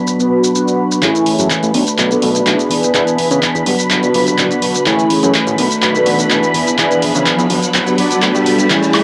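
A straight 4/4 groove at 125 BPM drives this sunny, funky filtered disco house clip in A major, with a punchy, tape-warm analog drum machine up front laying down handclaps, hi-hat, shaker and woodblock, while a lush string machine holds mellow sustained chords and a slightly broken-up electric guitar picks a riff through a low-pass filter. Mellow synth brass, round and evolving with chorus and phaser, carries the accompaniment, and a fat, detuned analog bass enters at 1.0 seconds as the chords move through Amaj7, Bm7, E7 and Gmaj7 under a filter sweep and build-up. A background riser joins at 3.9 seconds, and the whole clip has the hazy grain of a home cassette recording with light reverb.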